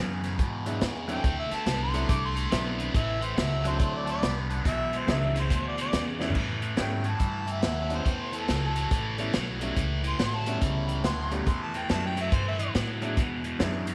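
A cranked, overdriven electric guitar riff with a phaser opens this rollicking, soulful electric blues shuffle in A mixolydian at 141 BPM over a woody pizzicato upright bass, then a vintage kit with punchy kick and dark cymbals, a brilliant upright piano in accompaniment, and, from 1.1 seconds, a mellow, distant overdriven harmonica solo with light vibrato and scooped notes fill out the swung groove, while a drum fill at 6.1 seconds marks the turn to the second section in a light-reverb studio sound with lossy compression artefacts.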